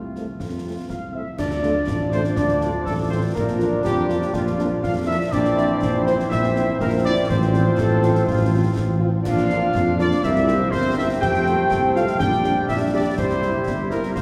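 A spirited, rousing military-style march for wind band in F major at 122 BPM in 2/4, cut from a longer piece and bathed in a wet cathedral reverb. A dark trumpet section carries the melody over a close-miked, up-front tuba bass, while a warm woodwind section, a warm euphonium with vibrato and a pure, very quiet flute section entering at 0.9 seconds add second lines, and a mellow, smooth-topped French horn section accompanies. From 1.4 seconds a bright trombone section sustains chords in the background, and concert snare drum, concert bass drum and clash cymbals with a dark cymbal colour drive the march.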